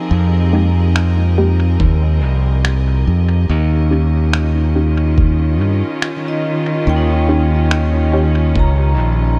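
A bright, punchy fingered electric bass sits up front with tube saturation, joined at 1.8 seconds by a muffled, thumpy, overdriven electronic kick in this hazy, deep ambient dub excerpt at 71 BPM in 4/4, with a swung sixteenth feel and chords moving from Fm11 to Eb7 at 3.5 seconds. Dark, intimate bowed strings hold sustained chords with light vibrato and a soft sul tasto attack, while a ringing, metallic vibraphone with hard mallets plays arpeggios through tape echo in the background. A muted, detuned sawtooth chord stab with a filter sweep, chorus and dub echo drifts underneath, and pitched-down, compressed electronic finger snaps with overdrive and dub echo enter at 1.0 seconds, all set in light reverb and studio ambience.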